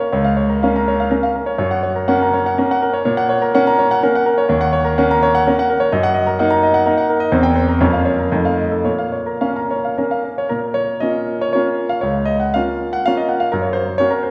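Graceful and rustic, this short passage from a longer classical piece is a romantic triple-time dance for solo concert grand piano, shaped with flexible rubato and dotted rhythms. The piano sounds clear and polished, with a deep bass, as its harmony moves from Bbm/Db through Gb and Ebm7 to a C7/E and F7 turn that settles on Bbm at 8.9 seconds before the opening phrase returns at 10.5 seconds. A wet recital hall reverb surrounds the instrument, placing the listener further back in the room.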